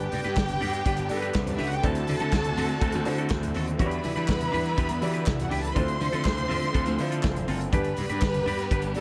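In a small room with light reverb, this joyful, celebratory disco excerpt is driven by a gritty, overdriven slap bass and an up-front soul drum kit with a tight kick. Above them, a lush bowed violin section carries the second line while a clear, biting symphonic string section holds sustained chords in the background. A natural, deep-toned concert grand piano and a twangy, clean electric guitar fill out the accompaniment as bright congas and crisp group handclaps sit very quietly underneath, the claps coming in at 0.4 seconds, over chords moving from G through D7, Em7 and Dm7 back to G.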